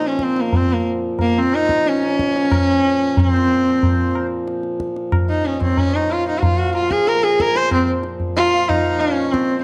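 A close, earthy sarangi leads this solemn, introspective Hindustani passage in raga Darbari on Bb, its airy bow and gliding portamento ringing against sympathetic strings, over a reedy, breathing pedal-harmonium drone and a high-tuned, dry tabla with a short ring, all at a straight 92 BPM in 4/4. At 3.3 seconds a nasal hand-pumped harmonium enters quietly in the background with a second line, its boxy small-room tone set behind the sarangi's up-front voice. A moderate recital-hall reverb and a dark, warm production shape this short extract from a longer performance.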